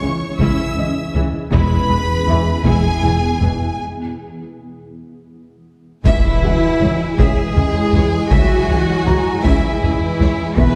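Heard from far back in a wet scoring-stage space with a touch of lossy grit, this brooding, relentless hybrid film cue in 6/8 at 53 BPM in C# dorian carries a lush studio violin section melody over smoother symphonic second violins, close violas, mellow French horns, clear trombones, a blurred granular cloud pad, a tight detuned sawtooth synth arpeggio, distant double basses, very quiet cellos and a muted felt upright piano, with heavy-stick taiko entering at 0.4 s and a break and drum fill leading to an electronic impact and an intimate sul tasto solo cello melody at 6.1 s.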